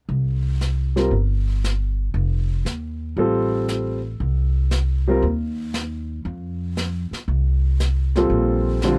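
Jazz piano trio in a swinging, sophisticated mood, where woody pizzicato upright bass and an airy brushed drum kit with hi-hat and a medium-tuned snare start together before a smooth, vintage-toned grand piano takes the melody up front from 1.0 seconds, moving through chords that settle on a Bbmaj9 at 8.3 seconds, all captured in a dry, close 1970s-style studio sound with light reverb in this short fragment of a longer piece.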